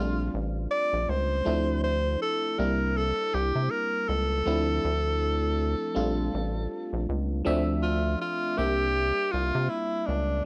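R&B with a neo-soul lean, this sultry, introspective clip drifts at an unhurried swung pace, with a breathy tenor saxophone out front singing a whispered, intimate jazz-style solo full of vibrato and scooped notes. Beneath it, a glassy FM electric piano with a bell-like attack and chorus shimmer voices lush chords such as Bbmaj13, Dm9 and C9, while a rubbery, bouncy square-wave bass sits up front with a nasal, hollow pluck. A small room ambience and the warbling pitch drift of worn cassette tape give the whole piece a hazy, timeworn cast.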